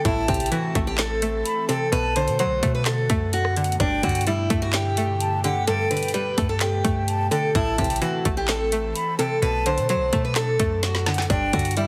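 Triumphant yet dreamy half-time trap hip hop at 128 BPM in G major, in which a boxy old ladder-braced acoustic guitar picks the up-front melody with audible finger squeaks while a breathy, hollow concert flute with vibrato and tape echo carries a second line above, a twangy, bright resonator pluck with chorus supplies accompaniment, a soft background pad drifts under chorus and phaser, a deep, boomy sine 808 bass anchors the low end, and an electronic trap kit of hard-clipped kick, woody snare, metallic hats, claps and rim clicks drives forward to a drum fill at 10.8 seconds, all heard through a heavily compressed radio-like sheen in this brief excerpt.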